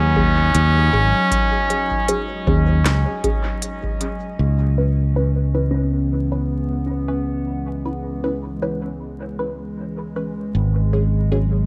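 A muted trombone opens this spacious, deep ambient dub excerpt at 78 BPM in C# minor. Its nasal, brilliant solo line sits up front with tape echo, over a direct, tube-saturated fingered electric bass and a faint, glassy texture of drifting overtones bathed in chorus and reverb. Almost at once a warbling, lo-fi pad settles into sustained chords with chorus and phaser, while a resonant sawtooth dub stab, filter-swept through the opening section and thrown into dub echo, punctuates the harmony. An overdriven analog kick and an organic electronic kit with woody snare and crisp hats carry a gently swung 4/4 through that first section, then drop away as the chords move from G#7sus4 to C#m7. Later a dark, ringing kalimba plays low-passed arpeggios in the background from 5.7 to 8.6 s, its thumb plucks trailed by tape echo. Vinyl crackle and a light digital ambience frame the echo-heavy mix, which returns to G#7sus4 near the close.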